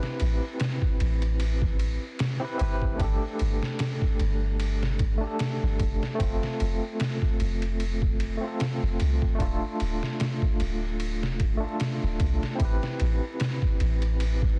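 Dense, heavily limited and dusted with vinyl crackle in a dry room, this brooding, cinematic trip hop fragment cut from a longer piece moves at 75 BPM in A minor with a light swing. A gritty, pitched-down sampler-style kit with a thumpy kick, medium-tuned snare and ride sits up front in studio reverb beside a deep, round, sine-like 808-style bass that enters at 0.2 seconds. A bright, barky, overdriven tine electric piano played through a combo amp carries fast tremolo and tape echo over the chords Am7, Gsus2, F and Dm.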